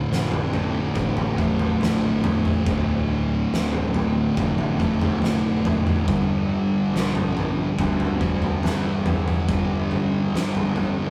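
A dark, distorted fuzz guitar riff sits up front in this hypnotic, ominous stoner and doom metal passage at a slow 70 BPM in D minor, shifting from Dm to Gm at 6.1 seconds. A second, warmer fuzz guitar also plays a riff further back, while a growly, overdriven electric bass adds a bright, picked edge underneath. An oversized, low-tuned acoustic drum kit with a fat snare, punchy kick and toms rings through a pumping stone room, all captured in a rough rehearsal-room recording with light reverb and warm saturation in this short cut from a longer piece.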